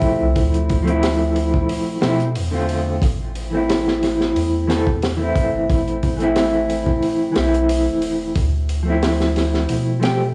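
A mellow, clean electric guitar opens this smoky, melancholic trip hop excerpt at 90 BPM in A minor, its dark fingered chords carrying tremolo, cassette tape colour and tape echo over Dm7 and Am, alongside a gritty, saturated breakbeat kit with a punchy kick, high-tuned snare and hi-hat that sounds close and rolled-off in a small room. From 0.2 seconds a soft, round dub sub bass settles in beneath, deep and sustained with a fast attack. Light reverb and a home cassette recording lend the whole a hazy, intimate air.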